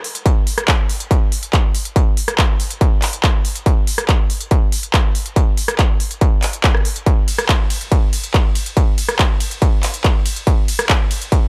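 A dry, close sound frames this intense, relentless techno passage at 141 BPM, cut from a longer piece. The drum kit starts at 0.0 seconds, its smooth hi-hats and ride cymbal sidechain-pumping alongside handclaps and rim clicks, with a tape-warm, small-room character. At 0.3 seconds an overdriven, distorted electronic kick drum lands up front and drives the straight 4/4 pulse to the end.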